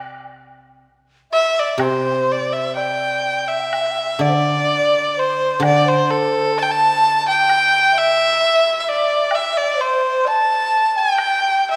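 A ringing, silvery guzheng played with fingerpicks opens this graceful, pastoral piece of Chinese traditional chamber music, its low accompaniment sounding alone in D shang mode at a rubato 64 BPM in 2/4. At 1.3 s a single bowed erhu takes the melody up front, nasal and biting with an earthy edge, shaded by light vibrato and portamento. Entering at the same moment, a low bamboo xiao carries a second line in a close-miked, hollow straight tone, breathy and mellow with crisp attacks. A very quiet woodblock adds close, dry percussion beneath the two lines. At 3.7 s the music moves from its brief opening section into a longer second one, and the guzheng falls silent at 8.4 s, the erhu and xiao carrying on through a wet scoring-stage reverb until this fragment of a longer work is cut off.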